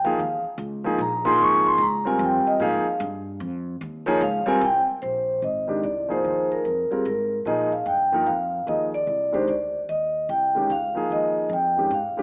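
This modal jazz excerpt opens with vibraphone, piano and upright bass playing together, and the soft-mallet vibraphone takes a solo through the first 5.0 seconds. At 148 BPM in 3/4 with a swung eighth-note feel, the music has a spiritual, hypnotic mood as the harmony moves between Eb9sus4 and Bb9sus4. The vibraphone, played with its motor off, carries the melody up front with a metallic, ringing yet mellow tone. The grand piano accompanies in a warm, natural voice that also sits close in the mix. Beneath them, the pizzicato upright bass, woody and growly with steel strings, sits lower in the balance. A moderate large-studio reverb surrounds the parts, and the whole recording has the character of a small speaker.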